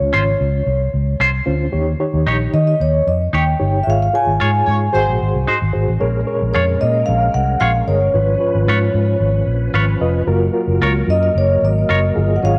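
A mellow soft-mallet vibraphone melody with tape echo opens this joyful soul passage at 112 BPM in Db major, over a reedy electric piano with fast tremolo and a dark, foam-muted electric bass sitting up front, while a bright, compressed semi-hollow guitar adds clean stabs, a tight, distant horn section plays a brief octave-doubled second line from 4.7 to 5.3 seconds, and a key-clicking tonewheel organ with slow rotary speaker holds sustained chords from 6.0 seconds in a small, lightly reverberant room.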